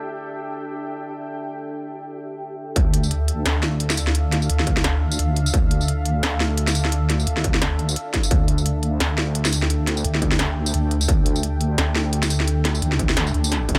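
Dry and close, this dark, tense half-time drum and bass excerpt opens on a moody ambient pad with vintage sampler grit and sidechain pumping, alongside a faint, flickering grainy texture in the background, before the drop at 2.8 seconds brings in a deep, wobbling sawtooth bass up front, a distorted electronic kick, and an industrial kit of clanging snare, crisp hats and tambourine, closing on a drum fill at 13.5 seconds.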